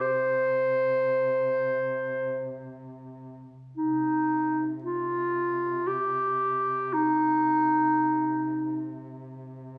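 In free time and C minor, this mournful, longing Caucasian folk lament, cut from a longer piece, sets an up-front clarinet of warm tone and soft attack, singing a classical-style melody between Eb4 and C5 until 8.9 seconds, over a quieter, mellow duduk drone on C3, shaded with vibrato and scooped notes, that holds to 9.8 seconds, all within a moderate scoring-stage reverb.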